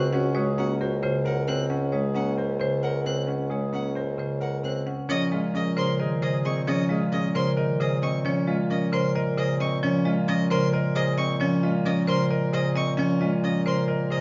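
A bright, up-front hard-mallet marimba drives this meditative yet urgent minimalist classical pattern piece at 266 BPM in 7/8, alongside a woody medium-hard-mallet marimba melody in the background, brilliant concert grand piano and clear, vibrato-touched violin arpeggios, a soft-attack bassoon bass, and a dark clarinet second line that appears only briefly before returning from 5.1 to 8.0 seconds as the harmony settles into Bb minor, all set back in a large studio room with moderate reverb.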